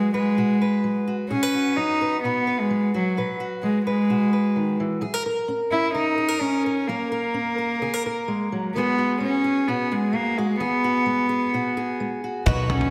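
Nostalgic and hopeful, this indie folk excerpt moves at 129 BPM in a straight 4/4 in B major, its arrangement built to grow. A bowed cello carries the melody from the start, soft in attack and floating, with a pure, smooth top and a touch of digital delay, sitting up front over a fingerpicked steel-string acoustic guitar that adds slapback echo to its concert tone. The chords pass from B5 to F# and then to Eadd9. At 12.5 seconds the band arrives: a bright, shimmering twelve-string guitar with its octave doubling, a mellow, twangy banjo played with fingerpicks, a woody, dark upright bass plucked in the background, and a natural country drum kit whose punchy kick and toms sit up close. The whole is bathed in a wet recital hall reverb with small room ambience, giving it a big arena sound.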